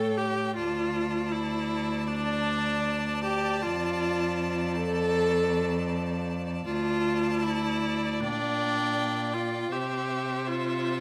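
A string quartet begins together in a slow, rubato classical movement in D minor at 78 BPM. Its lyrical, tender mood rests on a smooth, even first-violin melody with vibrato, over a second violin whose warm, focused line sits just beneath. The viola's close accompaniment and the cello's bass with light vibrato stand up front as the harmony moves from A7 to D minor and arrives on C, all captured by detailed close microphones in a moderate recital hall reverb in this passage cut from a longer piece.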